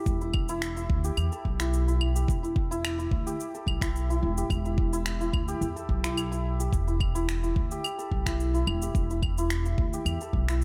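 A small room ambience surrounds this short fragment of a longer piece, with a faint mains hum beneath it. It is organic downtempo in E minor at 108 BPM in a straight 4/4, tuned to A4 = 441 Hz, and its mood is earthy and meditative, resting on an E minor chord throughout its 10.6 seconds. Up front, a hammered santur plays shimmering, ringing arpeggios between E4 and A4, its tone treated with digital delay. An upright bass sits equally close, plucked pizzicato on steel strings with a woody, thumpy character, ranging from E1 to E2 and pumping under sidechain compression. A deep, produced electronic kick drum and a lighter layer of electronic shaker, claves and finger snaps supply the beat, both set in studio reverb.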